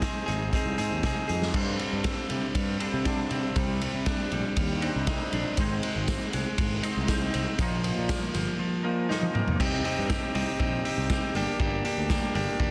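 A gritty, saturated drum kit sits up front in this moody, bittersweet indie rock excerpt in C minor at 119 BPM, its punchy kick and medium-tuned snare ringing in a stone room, with a drum fill at 9.1 seconds. An up-front overdriven electric guitar and a bright, lo-fi garage guitar, treated with analog chorus and slapback echo, play picked riffs over a round, fuzzed picked bass, until the garage guitar drops out at 9.6 seconds as the chords settle onto Cm and Gm. A jingly, close tambourine joins in the background at 5.6 seconds, all held in a dense, heavily limited modern master.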